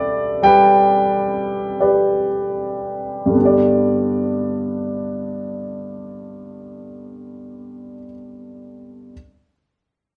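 Folk in a heartfelt, hopeful 6/8, this short piece cut from a longer one features a warm concert grand piano carrying the melody up front, its deep bass and open tone filling a small room with moderate reverb as it slows down over the first 3.4 seconds before a new section begins.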